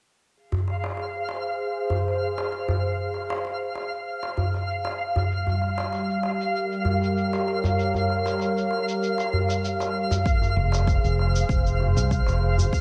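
Lightly reverberant and marked by lossy compression artefacts, this excerpt of organic downtempo moves at 97 BPM in a straight 4/4, in F minor tuned to A4 = 436 Hz, with a hypnotic, warm mood. A detuned sawtooth analog pad sits up front, holding smooth, slow-attack chords with chorus and sidechain pumping through Fm, Gm7b5 and back to Fm. Above it, a twinkling granular texture adds a sparkling, octave-up shimmer with a soft attack and long release. A gritty, overdriven cabasa, low-pass filtered in a small room, and a deep clay-shelled darbuka with natural skin keep the percussion going, while a filter sweep on the drums runs through the whole passage. At 10.3 seconds an overdriven electronic kick lands, and at 10.6 seconds a round, dark fretless electric bass joins up front in the low register.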